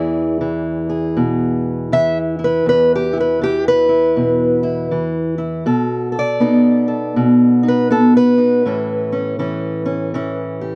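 A fingerpicked steel-string acoustic guitar plays alone from the first moment, a laid-back, soulful slice of acoustic country blues cut from a longer piece, moving at 80 BPM in 4/4 with a gentle swing in E mixolydian, tuned slightly low to A4 = 436 Hz. The parlour-sized guitar sounds dark and boxy, sitting up front under close, detailed microphones that catch the finger squeak, with a light reverb around it. Its line spans E2 to E5 over an E7 chord, shifting to B7 at 5.7 seconds and A at 8.7 seconds before the cut at 10.8 seconds.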